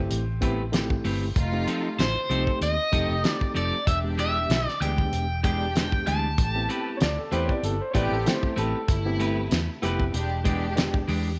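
A lightly reverberant studio sound frames this smoky, mournful cut from a longer straight-eighth soul blues. A mid-forward drum kit with a fat snare and tight kick sits over a dark, round, foam-muted electric bass and a gritty, overdriven reed electric piano pulsing with fast tremolo through a combo amp, while a compressed, slightly broken-up guitar adds picked stabs, lush bowed strings with vibrato and portamento hold sustained chords in the background from 1.4 seconds, and a woody upright piano with long sustain offers a brief second line. The melody belongs to a bright, picked, overdriven electric guitar with slapback echo, carried up front from 2.0 to 7.3 seconds.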